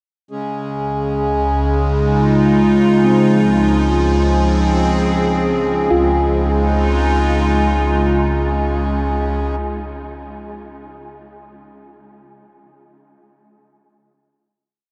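Drenched in a huge reverb within a dark, warm production, this serene ambient piece opens with a reedy, breathing harmonium drone at 0.3 seconds, joined by a bright, detuned and warbling wavetable pad with chorus that shifts slowly through sustained chords up front and a deep, ominous rumbling bass drone, while a ringing, meditative handpan enters at 3.0 seconds with one slow arpeggio loop through a delay in the background, before the piece settles onto a final chord at 5.9 seconds.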